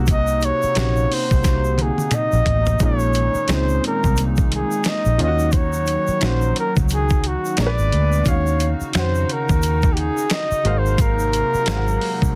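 A hollow, airy pad with chorus, a woody, slightly detuned upright piano and a dark, foam-muted electric bass open this late-night, soulful neo-soul R&B excerpt at 88 BPM with a swung 16th feel. At 0.1 seconds they are joined by a mellow, close-miked flugelhorn solo with light vibrato and scooped notes, a gritty, pitched-down boom bap drum kit with a thumpy kick and a fill from 1.4 to 2.8 seconds, and a faint egg shaker with finger snaps. Everything sits in a dense, dry mix over chords moving from Cm7b5 through Ebm9 to Ab13.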